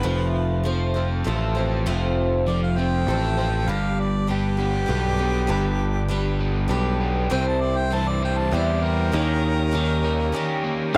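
A mellow harmonica carries the solo through this short folk rock and heartland rock passage, its vibrato and smooth top lending a pop-style lyricism to the dusty, wistful mood. Beneath it, a crunchy, double-tracked overdriven guitar plays a riff, while a boxy acoustic guitar picks a swing-style accompaniment over a straight 3/4 feel at 99 BPM. A modern picked electric bass sits up front with a growly, direct tone, entering at 0.1 seconds and dropping out at 10.3 seconds. Very quiet in the background, a tonewheel organ holds clean sustained chords with chorus vibrato, key click and a stopped rotary speaker. The harmony moves from F to G and C before landing on Eb7 at 9.1 seconds, all captured in a dry, close 1970s-style studio sound.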